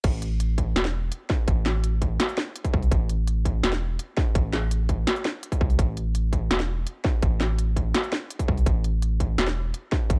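Cinematic and spacious in mood, this short cut from a longer half-time drum and bass track sits at 167 BPM in 4/4, in A minor with tuning set to A4 = 438 Hz. A saturated sub bass runs from start to finish at 10.2 seconds, deep and thick with a triangle-like tone, a fast attack and sustained notes ranging from E1 to C2, placed up front. An electronic kick drum, distorted and overdriven, hits throughout alongside an industrial drum kit whose clanging snare, crisp hi-hats and crash cymbal carry their own overdrive. Both drum parts sound re-recorded in a small room and sit up front in the mix. The whole passage plays as a drop, with little reverb and a dry, gritty hardware character.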